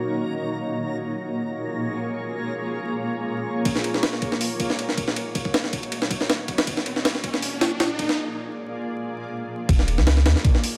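A light reverb and a digital ambience frame this short cut from a longer drum and bass and jungle piece, with vinyl crackle running underneath and a nostalgic, dark mood in Eb minor at 159 BPM with a slight swing on the sixteenths. It opens on a cloudy, blurred granular pad holding sustained chords up front, moving from Ebm7 to Bbm7 under a filter sweep, while a reversed, dreamy, detuned texture glimmers high in the background. At 3.7 seconds a gritty, compressed breakbeat kit enters with a thumpy kick, a high-tuned snare, hi-hat and ride, its pitched-up, tape-warm sampler character placed up front as the build-up begins over Ebm7 before shifting to Bb7. A faint electronic riser climbs in the background before the music drops into a short break. At 9.7 seconds a deep, boomy 808-style bass arrives with tube saturation and a mellow, decaying sine tone, landing the drop back on Ebm7 as the evolving pad carries on to the end.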